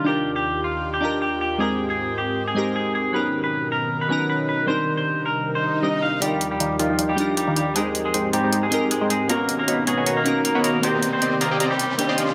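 Swung sixteenths at 156 BPM in 4/4 give this playful, euphoric future bass cut a loping half-time feel, set in Eb major and cut from a longer piece. A twangy, up-front clean electric guitar carries the melody, roughened by vintage 12-bit sampler grit and trailed by dub echo, while glassy digital keys with chorus and phaser fill in the accompaniment. Beneath them, an airy, breathy pad holds sustained chords with chorus, moving through Ebmaj9, Abmaj7, Bmaj7 and Cm7. An electronic swell and riser sits in the background from 5.6 seconds. At 6.2 seconds the build-up begins: a punchy, detuned supersaw stab enters with a riff under a low-pass filter sweep, and bright, overdriven electronic hi-hats join it. A moderate, lush hall reverb surrounds the whole mix.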